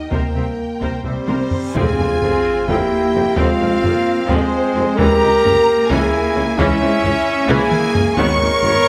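Dark and heroic, this cinematic orchestral film-score excerpt drives in a straight 7/8 at 262 BPM in F harmonic minor. Its warm French horn chords sit over a compressed, saturated taiko ensemble, and lush vibrato violins carry the melody and a second line above a bright viola accompaniment. Smooth cellos and double basses hold the low end, while a mellow trumpet adds stabs from 1.1 seconds. A huge reverse cymbal and sub drop lead into a hard-mallet timpani impact at 1.8 seconds, where a very quiet, roomy tuba joins. The whole piece sits in a moderate scoring-stage reverb as the chords move from Fm to Dbm to Abm.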